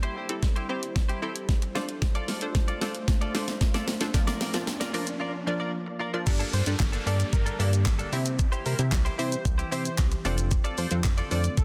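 This energetic, bittersweet dance-pop excerpt opens with an up-front pop drum kit, a knocking kick and fat snare with handclaps, hi-hat, shaker and crash, running a drum fill through most of the build-up while a round, detuned analog pluck with chorus and sidechain pumping, a twangy clean electric guitar riff and a distant, glassy FM pad carry the harmony. Set in G dorian at 113 BPM in a straight 4/4, the chords move from C to F6 and Bb/F, and a very quiet riser and downlifter thread through the middle from 0.9 seconds. The drop arrives at 6.3 seconds, bringing in a glossy, nasal chorused synth bass that pumps with the kick. Just after, at 6.5 seconds, a thick unison lead with vibrato and digital delay takes the melody over Gmadd9, C and F6. The mix sits in light reverb with a dense, heavily limited modern master.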